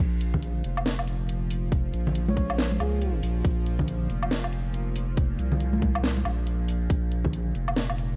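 A detuned, string-like drone on Bb dorian chords shimmers with phaser and its own reverb over a thick, saturated sine sub bass from the start of this dark, meditative deep dubstep drop, moving in a half-time, swung feel at 139 BPM. Up front, a tight, tape-warm electronic kick and a garage kit with a cracking snare, hi-hat and woodblock join a bright, high-tuned conga played with hard hands. Between 2.3 and 3.1 s, a soft, breathy flute-like synth lead drifts through chorus and dub echo, all in a dry mix dusted with vinyl crackle.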